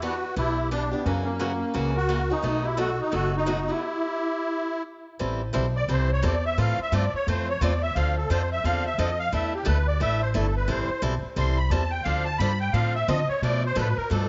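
A moderate echo-chamber reverb surrounds this fiery, virtuosic slice of acoustic string swing in the jazz manouche style, and its highs are softly rolled off. A reedy, shimmering musette accordion carries the melody up front, while a bright, boxy picked acoustic guitar keeps the swung accompaniment going underneath. A dark, woody upright bass, plucked on gut strings, sits up front with a thumpy presence. In the background, a warm clarinet plays a smooth second line with light vibrato, subtone and scooped notes until 4.8 s, just after the band hits a stop at 3.8 s. From 5.2 s the accordion takes a solo over a minor-key progression, and the excerpt is cut from a longer piece.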